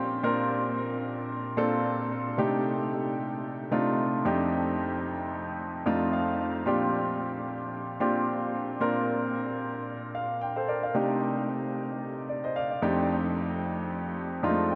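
Amapiano with a deep, hypnotic mood and a gentle sixteenth-note swing, heard in a section cut from a longer piece: a warm, up-front grand piano plays alone with delay, cycling through Bb69, Cm69 and F13 harmonies and adding fills at 5.6 and 9.9 seconds, all soaked in a huge ambient reverb that gives the mix a dreamy haze.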